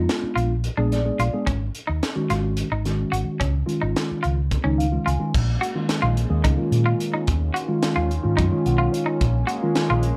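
Driving and intense, this electric jazz fusion excerpt in 7/8 rides on a crisp drum kit with bright cymbals, a high-tuned snare and a tight kick in a small, pumping room, while a dark, round, hollow-body fingered bass sits up front beneath a mellow tine electric piano, which is lush with chorus and adds fills, and clean, compressed stabs from a semi-hollow guitar, and at 5.3 s a thick, nasal, detuned unison pad joins them with slow-blooming sustained chords.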